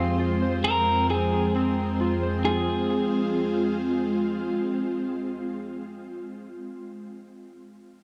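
A huge ambient reverb hangs over this short, spacious and hazy hip hop fragment in F minor, moving at 133 BPM with a half-time feel. An ethereal, airy pad sits up front with detuned, slow-attack chords thickened by ensemble chorus, while a clean, compressed electric guitar carries a fingered melody through spring reverb and tape echo until 3.8 seconds. Behind them, warbly lo-fi synth keys add nostalgic square-and-saw arpeggios with a filter sweep, chorus and tape echo, lingering to 6.2 seconds.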